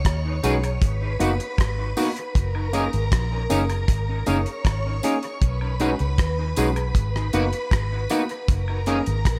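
A cloth-damped, thuddy drum kit sits up front with a tight kick, hi-hat and rim click wrapped in gated reverb, over a dark, foam-muted fingered bass that is round and punchy in this romantic, smooth lovers rock reggae excerpt. A barky, lightly overdriven tine electric piano carries the accompaniment, while a twangy electric guitar at the edge of break-up adds chorused stabs with dub echo, and a silky, slow-attack string machine holds a sustained second line behind them. Tambourine and woodblock sit in the background with dub echo as the chords move through B6, G#m7 and F#6.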